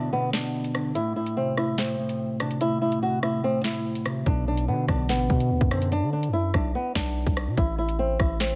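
Cold and dark, this half-time drill hip hop cut at 145 BPM in B phrygian pairs a boxy, thumb-plucked flamenco guitar melody, finger squeaks and all, with a clean electric guitar wrapped in lush chorus that stops at 5.9 seconds, while an electronic drum kit with a hard-clipped kick, sharp snare and metallic hats sits up front, and a deep, sine-toned 808-style bass with a fast attack arrives at 4.3 seconds, all within light reverb over a faint mains hum.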